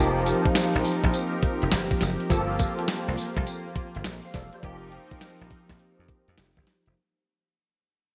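A bright digital sheen from the 1980s and a moderate plate reverb give this short new jack swing excerpt a polished, slick character, and it fades out across its full 7.0 seconds. At 103 BPM in 4/4 with a 16th-note swing, the groove feels bouncy, tuned slightly low to A4 = 438 Hz. A crisp 8-bit drum machine, sitting up front, enters at 0.3 s with a thumpy kick, medium-tuned snare, hi-hat and tambourine, carrying a sampler-style, tape-warm character. Underneath, a dry thumbed slap bass sounds punchy and foam-muted, while a barky tine electric piano, clean through a combo amp and treated with ensemble chorus, supplies the accompaniment. A brassy analog pad holds soft-attack sustained chords, its detuned sawtooth and wave-folded tones evolving under a filter sweep and chorus. The harmony moves from F9sus4 to Gm11 at 2.3 s and back to F9sus4 at 4.6 s.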